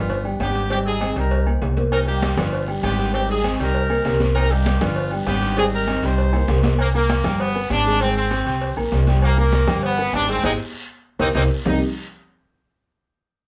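Salsa with a fiery, danceable drive, this excerpt opens with a punchy, vibrato-laden horn section carrying the melody over a mellow, boxy grand piano and a woody, thumpy pizzicato upright bass up front. Ringing, high-tuned congas, metal-shell agogo bells and timbales, and very quiet low-tuned cowbell and bongos fill in the percussion, joined at 1.9 seconds by a raspy, distant guiro. At 6.8 seconds a bright, tight trumpet section with light vibrato takes over the melody, and drum fills and a band accent push toward the close, with the group playing live in one room under moderate studio reverb.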